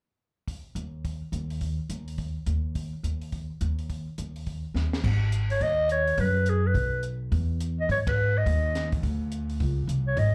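A raspy, growling clarinet with light vibrato, scooped notes and a slapback echo enters up front at 5.5 seconds over woody pizzicato upright bass from 0.8 seconds and a dark, compact cocktail drum kit with a high-tuned snare and punchy kick from 0.5 seconds, in this swinging small-group jazz piece at 210 BPM, cut from a longer performance, heard live through a club PA and punctuated by a drum fill and a band accent.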